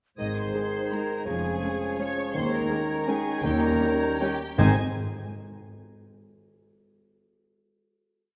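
A warm, lush violin section carries the melody high above this brief, festive orchestral ballroom waltz, its smooth, focused top singing with vibrato over a rubato three-beat sway. A second, richer violin section doubles the tune at the octave and in unison, while a dark, woody viola section sits in the background with after-beat and sustained chords from 0.5 seconds. Clear solo clarinet and oboe, a mellow bassoon and an airy, hollow silver flute move in chords that follow the rhythm of the tune, and a distant French horn section holds soft-edged sustained chords beneath them. Cellos mark the bass on the beats, doubled by an even double bass section, and round, soft-mallet timpani join at 2.3 seconds with single strokes on the bass notes. The elegant phrase passes through a suspended dominant to a final chord at 4.6 seconds, all bathed in the generous wash of a scoring stage.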